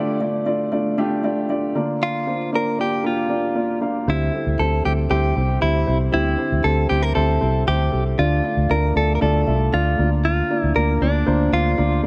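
A dark, woody upright piano opens this brief cut from piano-driven pop, its mellow chords ringing with long sustain over Dm and Bb/D at 117 BPM in a straight 4/4, setting a dramatic, earnest mood. At 2.0 seconds a clean, compressed electric guitar recorded direct enters with a picked melody in a close middle range, and at 4.1 seconds a round, foam-muted fingered bass joins up front, its vintage amped tone anchoring the low end as the harmony moves through C and back to Dm. Light reverb gives the parts a small-room ambience.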